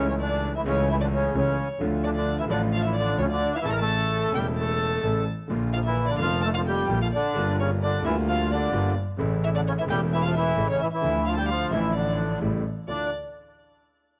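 A rubato tango in 4/4 at 130 BPM and D harmonic minor, this passionate, sultry passage is cut from a longer piece and moves through chords from A/C# and Dm to Bb, Gm7 and A7 before settling on Dmadd9. A dark, reedy bandoneon carries the melody up front, while a violin adds a second line above it with vibrato, portamento and a soft, expressive attack. A natural-sounding concert grand piano with deep bass provides accompaniment, and a close, intimate double bass, bowed sul tasto with light vibrato and an airy tone, sits up front, all in a small room with light reverb on a home cassette recording.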